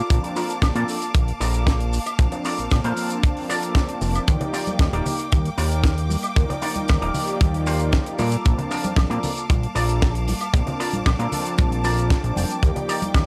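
A clear, lush string section pumps with sidechain on sustained chords as a twangy envelope-filtered electric guitar riff with chorus and analog delay opens this groovy, feel-good nu-disco excerpt in Bb major at 115 BPM, joined by mellow, brassy synth accompaniment, a fat, saturated analog bass, an up-front tight kick and a small-room funk kit with high-tuned snare, hi-hat, shaker and woodblock, while soft, bright congas enter in the background at 4.4 seconds, a clean guitar fill arrives at 11.8 seconds, and the chords move between Bbmaj7 and Ebmaj7 in a dry, gritty mix with studio reverb.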